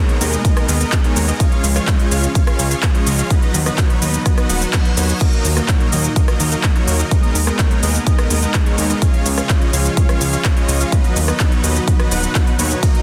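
Euphoric and anthemic, this 13-second cut from a longer festival progressive house track drives along at 126 BPM in a straight 4/4, tuned slightly flat to A4 = 435 Hz. Huge, bright supersaw chords carry the riff from the start, pumping with the sidechain and trailed by a digital delay, while a lush, warbling unison pad with a slow attack and chorus sustains chords behind them. A fat analog bass with a filter pluck and tube saturation enters at 0.2 seconds, pumping with the sidechain, and a punchy electronic kick sits up front from 0.4 seconds. The big-room drum kit, tape-warm and re-recorded in a large room, adds crisp hats, handclaps, ride, crash, rim clicks and shaker. The harmony moves through Abmadd9/Eb, Db, B/D# and Ebm, a reverse cymbal sounds in the background from 4.5 seconds, leading into Ebm at 5.2 seconds, and the whole is set in light reverb with a dense, heavily limited modern master.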